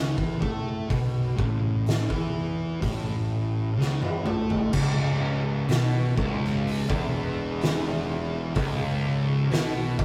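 Sludgy and ominous, this short stoner and doom metal excerpt crawls at 63 BPM in C# minor, where two dark, picked fuzz guitars (one very quiet, one distorted in the background) grind out the riff over a growly, overdriven fingered bass and an up-front, oversized low-tuned drum kit with a punchy kick, fat snare and dark cymbals in a bright stone room, before a drum fill from 3.8 seconds brings in a double-tracked, overdriven third guitar at 4.7 seconds as the harmony moves from Aadd9 to C#m, all caught in a rough rehearsal-room recording with moderate booth ambience.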